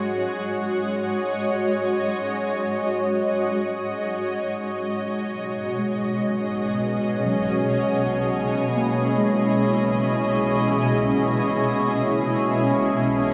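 Serene and warm, this free-time ambient fragment from a longer piece sets a blurred, slowly evolving granular cloud pad up front, with shimmer reverb, on F#sus2 and then C#madd9/B at 4.8 seconds, while muted, felt-like synth keys fade in gradually beneath it with soft arpeggios dressed in chorus and tape echo, and an overtone-sweeping, resonant drone joins at 5.9 seconds, all set in a vast, echoing cathedral space with a cassette-tape grain.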